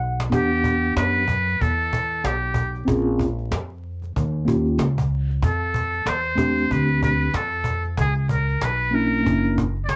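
A mellow tine electric piano and a woody pizzicato upright bass open this nocturnal, smoky jazz-hop excerpt, joined at 0.2 seconds by a snappy, saturated cajon and at 0.4 seconds by a breathy, buzzy metal-muted trumpet playing an intimate solo melody with slapback echo, over swung sixteenths and rich chords like Em9 and F69, the mix set in a small room and coloured by worn, warbling cassette tape and vinyl crackle.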